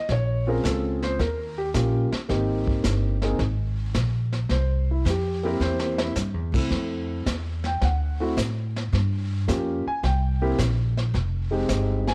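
Late-night and cool, this jazz piano trio excerpt in F minor swings at 109 BPM in 4/4, with a warm, up-front grand piano carrying the melody over changes such as Bbm7, Eb7, Abmaj7 and Gm7b5. A woody, thumpy pizzicato upright bass anchors the low end, while a dark vintage brush kit with a rolled-off top, punchy kick and brushed snare keeps time and adds a fill from 5.6 to 6.2 seconds. The piano and drums carry a cassette tape character, and the whole trio sits in a small room, captured as a home recording on cassette.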